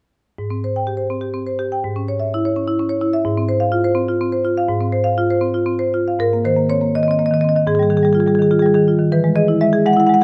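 A solo marimba, played with medium hard mallets on rosewood bars, carries this flowing, playful contemporary classical piece in Ab major, moving in a rubato 6/8 around 83 BPM and spanning Ab2 to G5 with a woody, dark, percussive tone that stays smooth and up front. The harmony passes through rich colors like Abmaj7, Dbm/Ab and Ab6 before a new passage at 6.2 s brings Abadd9 and Fm9/Ab, then turns to Eadd9 at 9.1 s. Close, detailed microphones catch every stroke within a moderate recital hall reverb, and the passage is cut from a longer piece.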